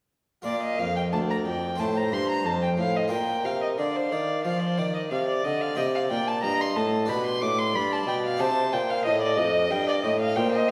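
A recital hall's generous reverb surrounds this short passage cut from a longer baroque-style sonata movement with continuo, and the players sound as if heard from further back in the room. The mood is flowing and serene, moving in a straight, even 4/4. A period-style violin carries the melody with a rich, nasal gut-string tone and light vibrato, while a second violin, placed up front, sings a higher supporting line with a warm, reedy quality. Beneath them, a solo bassoon in classical style holds the bass, also close and present, and a full-sounding Flemish-style harpsichord with two sets of strings fills in the plucked accompaniment across a broad range. The harmony moves from Bb to F and back, then shifts to C minor, passes through G, and returns to C minor as the passage breaks off at 10.7 seconds.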